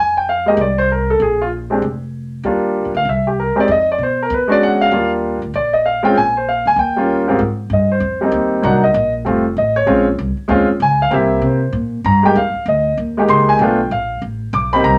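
Set in a modest small room with a short, moderate reverb, this playful, relaxed swing jazz fragment is cut from a longer piece. An up-front grand piano with a warm tone carries the melody over a shifting run of extended chords and shifts to a new key centre at 7.4 s. A woody, pizzicato upright bass on steel strings sits lower in the mix beneath it, and both play throughout.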